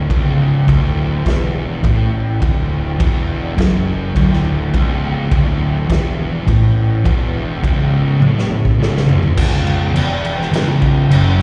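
A dark, up-front fuzz guitar riff, alongside a very quiet second fuzz guitar, drives this hypnotic, sludgy stoner and doom metal piece cut from a longer performance, over a growly fingered fuzz bass and a raw, punchy garage drum kit with a saturated, rolled-off sound that plays a fill at 8.2 seconds before an overdriven, double-tracked guitar enters in the background at 9.4 seconds, the whole captured as a live gig through the venue's PA with recital hall reverb.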